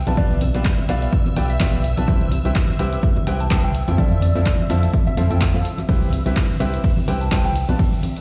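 A clear, open concert grand piano riff with short sustain and delay leads this joyful, euphoric piano house excerpt in C major at 126 BPM, pumping alongside an overdriven, punchy electronic kick and a round, dark FM bass up front, while an overdriven analog drum machine adds cabasa, handclaps, hi-hat and ride, very quiet ringing congas and tambourine sit close, and a soft, pure synth bell melody with chorus, phaser and delay floats in the background beside shimmering vintage string-machine violins, all heard as if played through a big sound system in a bare room.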